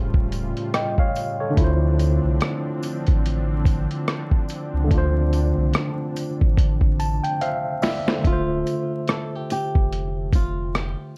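Dark production with light reverb and vinyl crackle frames this melancholic, nostalgic lo-fi hip hop excerpt with a swung feel. A worn, slightly out-of-tune tine electric piano with overdrive and cassette-tape colouring carries the accompaniment up front and plays a fill from 6.6 seconds. Beneath it sit a smooth, detuned sawtooth pad with chorus and tremolo, a deep sine-and-triangle sub bass with octave, a muffled, pitched-down sampler-style drum kit with a thumpy kick that adds its own fill, and a jingly tambourine tucked in the background. The pad stops at 8.2 seconds, and moments later an acoustic, fingerpicked flamenco guitar steps forward with a filtered melody.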